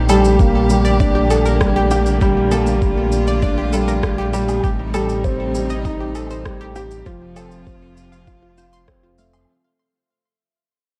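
A rich string quartet and a dark, detuned saw bass open this hypnotic, melancholic slice of piano and strings electronica, with the bowed chamber voices holding sustained chords full of vibrato and expressive portamento above the deep, rumbling, beating bass. Almost at once an up-front baby grand piano enters with an intimate riff, its natural tone carrying audible action noise and a touch of delay. A bright analog pluck spins round, wave-folded arpeggios high above, thickened with chorus and delay and shaped by a filter sweep, while it and the bass share a sidechain pumping. Electronic shaker, woodblock and rim click sit low in the mix with a large-room character, and a compressed, muffled, pitched-down kick joins at 0.4 seconds with a thumpy, tape-warm weight. The passage is a drop that fades out across its whole length, moving from Gmadd9/Bb to Am7b5 and then F, all wrapped in light reverb and a dark, warm production.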